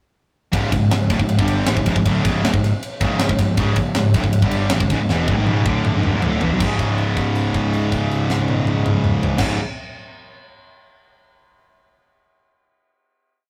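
A rough rehearsal-room recording with tube saturation and a short, wet booth ambience frames this heavy, epic heavy metal piece in C# phrygian at 158 BPM in a straight 4/4. Three bright, picked distorted guitars (one compressed, one high-gain, one double-tracked) sit in the background playing a power-chord riff, while a growly fuzz bass drives eighth notes doubling that riff, and an up-front, tight metal drum kit with bright cymbals, a high-tuned snare and a tight kick carries a big rock groove. After a drum fill from 5.1 to 6.6 seconds, the band lands on a final C#5 chord held until about 9.4 seconds.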